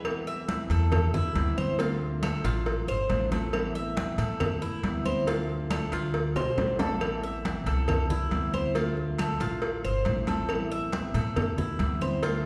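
Bathed in the long reverb of a recital hall, this sultry Cuban son and guajira passage features a mellow, metallic-edged tres picking arpeggios up front over a thumpy pizzicato upright bass, a dark, fingerpicked nylon-string guitar with audible finger squeak, round low-tuned cowbell and bongos, and saturated hard-hand congas and woody claves in the background, with a drum fill at 6.4 seconds as the harmony sways between Amadd9 and Dm7.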